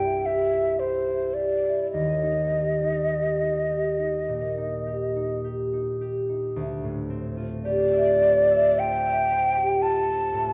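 The rhythm flows freely in rubato over a slow 4/4 pulse of roughly 50-60 BPM, giving this short cut from a longer classical piece a wistful, hazy mood. It is an impressionist duo in D minor: a concert flute carries the melody between C5 and A5 with an airy, hollow tone, gentle vibrato and soft attacks, while a concert harp accompanies across a broad span from C2 to E5 with thumb-plucked, ringing notes. Both instruments sound up front and play throughout, with the flute sitting somewhat louder than the harp. The harmony moves from Cadd9 to Eb at 1.9 seconds, then the music turns to a new section on Dm11 at 6.6 seconds. A moderate recital hall reverb and a dark, warm production surround the pair with a sense of space.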